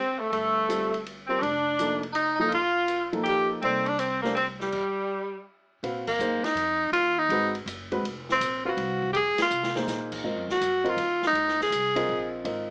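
Modal jazz in a swung 3/4 at 163 BPM, hypnotic and cool, cut from a longer piece and heard through a small-speaker sound with moderate studio reverb. A clear, forceful tenor saxophone carries the melody up front with vibrato and scooped notes, joined until 5.4 seconds by a bright, vintage-toned second tenor in the background. Alongside are woody pizzicato upright bass, an open acoustic drum kit with dark cymbals and a boomy kick, and a polished, long-sustaining upright piano accompanying up front from 0.7 seconds. The band stops at 4.7 seconds, then moves into a new section over suspended ninth chords, marked by band accents and a brief drum fill.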